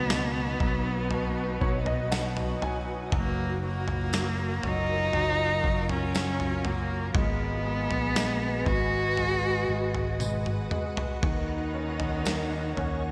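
A rich, nasal solo cello sings a heartbroken, longing pop ballad melody over an intimate concert grand piano with ensemble chorus and a fill, a shimmering, ethereal pad of sustained chords, and a punchy fingered electric bass, while a gritty boom bap sampler-style kit with gated reverb and a jingly tambourine in the background keep a slow, straight 4/4 pulse; the cello melody ends at 10.2 s as the drums play a fill, and a smooth, expressive chamber cello section takes a second line from 11.2 s, all set in a lush hall with bright 1980s-style digital polish.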